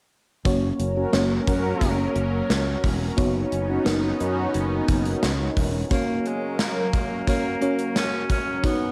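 This 1980s-style pop fragment moves at 88 BPM in a straight 4/4 in F# major, uplifting and nostalgic, with a hazy cassette-tape character and a lush hall reverb around it. A dreamy FM electric piano with a soft pad layer carries the accompaniment from 0.4 seconds, beside a thick, detuned unison pad that holds sustained chords with chorus and phaser. A gated 80s drum kit sits up front with a punchy kick, a medium-tuned snare and hi-hat in a bright stone room, while a growly sustaining fretless bass anchors the low end until 5.8 seconds. Round, mellow synth brass stabs sit in the background with vibrato and tape echo, and the harmony moves from F# to Badd9/F# and back. At 5.9 seconds a breathy, raspy tenor saxophone takes the solo melody, giving the closing bars a gritty vintage pop voice.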